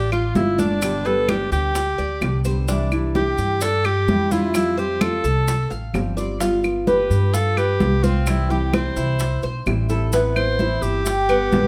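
A straight, danceable 4/4 groove at 129 BPM drives this brief, warm Cuban son and guajira cut in C major, where a clear alto saxophone with vibrato carries the melody up front over a woody, thumpy pizzicato upright bass, metallic double-strung Cuban tres arpeggios, fingerpicked full-bodied nylon-string guitar, bright background congas, very quiet saturated bongos, dry claves and grainy maracas, all set in light reverb with close, detailed microphones as the chords move from Dm through G7 to C before an Amadd9 opens a new section at 10.1 seconds.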